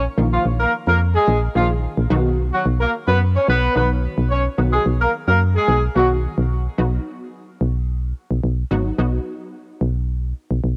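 Dance-pop at 109 BPM in 4/4, upbeat and summery, this short excerpt cut from a longer piece opens on a tight horn section carrying the melody up front with light vibrato, octave doubling and a cassette-tape tint until 6.1 seconds. Beneath it a punchy, round FM bass sits dark and forward through to the end at 10.8 seconds, while a lush, detuned unison pluck with ensemble chorus fills in the accompaniment further back. The harmony moves from A#sus4 to B at 2.1 seconds, and the whole has the light small-room reverb of a home recording on cassette.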